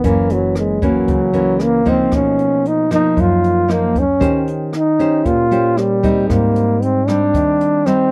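Relaxed and romantic, this 8.1-second cut from a longer bossa nova piece at 115 BPM puts a breathy, whispered trombone melody with light vibrato and scooped notes up front beside a dark, full-bodied, fingerpicked nylon-string guitar, while a very quiet pizzicato upright bass and a brushed jazz kit with hi-hat, rim click and a boomy kick sit beneath in a dry, close 1970s-style studio sound.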